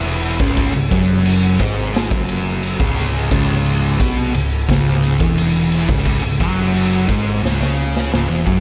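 A straight 4/4 pulse at 88 BPM drives this heavy, sludgy stretch of stoner and doom metal in C# minor, where a double-tracked, fuzz-drenched guitar riff sits up front over an amped, overdriven picked bass, while a raw garage drum kit with a punchy kick, medium-tuned snare, crash and ride enters at 0.2 seconds, its gritty, saturated sound in a bright stone room and pumping room, before a drum fill at 7.4 seconds closes this cut from a longer piece.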